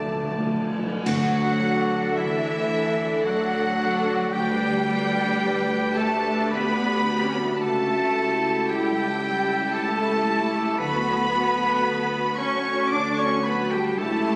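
A slow, romantic classical movement for symphony orchestra in D major, this tender, lyrical passage drifts at 56 BPM in a rubato 3/4, cut from a longer piece. A rich, lush violin section carries the vibrato-laden melody, shadowed by a very quiet, bright silver flute with a crisp attack, a clear oboe, a mellow background clarinet and a second, very quiet violin section. Beneath them a background viola section, mellow French horns holding sustained chords, a very quiet ringing harp playing arpeggios, and bowed cellos and double basses form a smooth, even foundation, while a mellow bassoon sounds only until 0.7 seconds. Hard-mallet timpani open with a fill, joined at 1.1 seconds by a dry accent of bright clash cymbals and concert bass drum, and the timpani return from 10.8 to 12.3 seconds. The harmony moves from D through G/D and A7/C# back to D, all set in a wet concert hall reverb, though the sound is coloured by a phone recording in the room, club reverb and compression.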